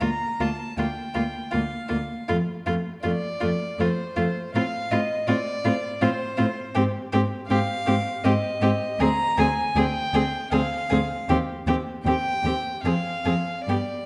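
Heard in a reverberant recital hall, this slow, solemn and melancholic romantic movement for string quartet, cut from a longer piece, moves at 79 BPM in a rubato 3/4, with all four players bowing sul tasto: a dark, pure first violin with a soft attack carries the melody up front until 14.1 s, a rich, intimate second violin with light vibrato and an airy bow plays the second line, a floating viola provides accompaniment, and a warm, smooth-topped cello holds the bass up front.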